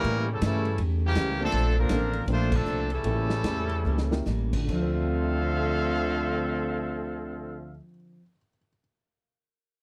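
A short, dramatic big band swing excerpt in D minor opens with the full ensemble: clear, vibrato-laden trumpets carry the melody over a second line from warm trombones, a woody pizzicato upright bass sits up front, a full-bodied picked acoustic guitar plays in the background, and a vintage kit with dark cymbals and a punchy kick swings at 138-162 BPM. A very quiet, intimate baby grand piano with audible action noise joins at 1.4 seconds as the tempo slows, the band hits an accent at 2.5 seconds, and a drum fill at 3.8 seconds leads toward a Dm9 resolution just before the drums drop out. The sound is dry, with little reverb.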